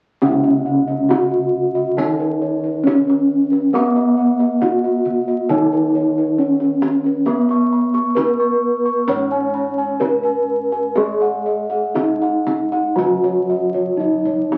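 Crackling like a very old 78 rpm record and washed in a club reverb, this serene, shimmering Javanese gamelan fragment in Db slendro moves at 67 BPM with uneven beats, as an up-front bronze metallophone carries the mellow melody under padded mallets and a second metallophone struck with a wooden mallet rings beneath it in accompaniment, both with beating paired tuning and a band-limited vintage tone, while bossed gongs play arpeggios with a round, boxy-room warmth in the background, softer padded bossed gongs hold the bass, and a tight kendang keeps time before breaking into a fill at 13.7 seconds.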